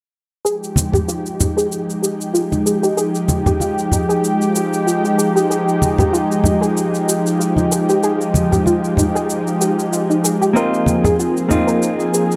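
This relaxed, smooth sunset chillout excerpt opens at 0.4 seconds on a lush, thick unison pad holding sustained chords up front, its detuned sawtooth voices warbling with vintage chorus and a shimmer reverb, settling on an F minor ninth. Alongside it, a soft, round pluck traces arpeggios through a filter sweep, its gentle decaying tone colored by ensemble chorus, cassette tape grain, tape echo and shimmer. At 95 BPM in 4/4 with a light swing on the sixteenths, an electronic, tape-softened shaker sits low in the mix while close, low-tuned congas with thick skins are struck by hard hands. At 10.5 seconds a dark, clean hollow-body electric guitar steps up front with fingered accompaniment, touched by tape echo and shimmer as the harmony moves to an Ab six-nine chord. The whole sits in a moderate plate reverb with a dark, warm production, tuned slightly below standard pitch.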